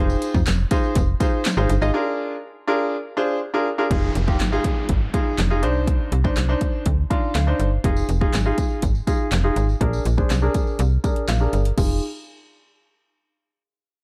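Dark, warm production with light reverb frames this energetic, bittersweet dance-pop excerpt in F dorian, moving at 122 BPM in a straight 4/4 over chords such as Fm7, Bb7 and Cmadd9. A bright concert grand piano with brilliant highs and short sustain carries the accompaniment up front, pumping against the sidechain, with a filter sweep running across it from 3.9 s and short piano fills near the ends of phrases. Beneath it, a slap-like FM bass with a snappy, metallic attack and quick decay also pumps, holding the low end in a digital, up-front tone. The pop drum kit is electronic and layered, with a punchy kick, fat snare, handclaps, crash and metallic hats, all overdriven and re-recorded in a small room. A jingly, vintage tambourine sits in the background, and a downlifter sweeps through the mix from 3.9 s to 7.8 s.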